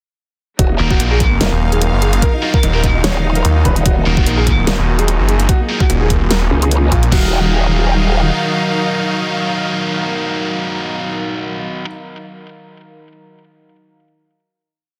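Heavy wobble dubstep with an aggressive half-time drop from 0.6 to 7.1 seconds, where an overdriven, knocking electronic kick and a dubstep kit with a huge snare, closed hi-hat and crash drive a growling, chorused wobble bass and a snarling, chopped sawtooth bass up front, while a boxy grand piano with audible action noise repeats a sixteenth-note riff over a pedal note through tape echo, a double-tracked high-gain guitar adds sparse chord stabs, and a biting, distant string section holds slowly shifting chords as an evolving wavetable pad sustains chords in the background into the final chord.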